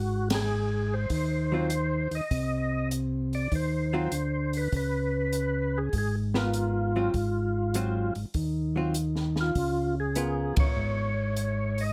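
Greasy and bluesy, this soul jazz organ trio swings at 99 BPM in Ab mixolydian, with a gritty, overdriven tonewheel organ carrying the percussive melody through a slow rotary speaker and chorus vibrato, a smooth, clean tonewheel organ bass with audible key click, an acoustic jazz drum kit entering at 0.3 seconds with a high-tuned snare and boomy kick, and a dark, compressed hollow-body archtop guitar accompanying from 1.5 to 11.1 seconds, set in a lightly reverberant studio room and punctuated by band accents at the start and near the end.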